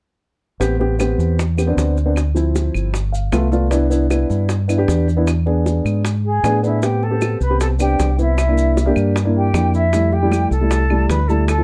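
A dark, dry production frames this sophisticated, fiery Afro-Cuban jazz excerpt, where an up-front, bass-heavy grand piano accompanies over a round, amped fingered electric bass, low-tuned bongos, grainy compressed maracas and woody claves that sit in the background from 1.0 seconds, with the piano adding a brief fill at 2.9 seconds, until at 6.3 seconds an airy, distant flute with expressive vibrato takes the melody above a second flute playing a pure, straight-tone line beneath it.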